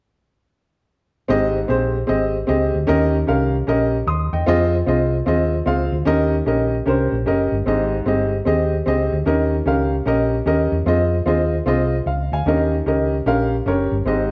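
Soulful and jubilant, this uptempo gospel excerpt with a swinging feel sets a woody, boxy upright piano up front over a dark, round hollow-body electric bass, both playing from 1.3 to 14.3 seconds through a moderate recital-hall reverb and the worn, warbling pitch drift of old cassette tape, cycling through Abmaj7, Eb7 and Fm7 chords.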